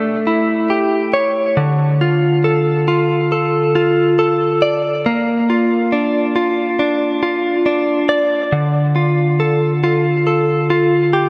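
A clean electric guitar, recorded direct and sitting up front with a picked, compressed tone, plays alone through this heartbroken pop excerpt in D minor at a slow 69 BPM. Its diffuse ambient delay melts into a lush hall reverb with a long 2.8-second tail, giving the mix a dreamy, soaked quality. The chords move from A7 to Dm at 1.6 seconds, then to Bb and back to Dm, while the guitar spans D3 to D5 in an emotional, unhurried sweep.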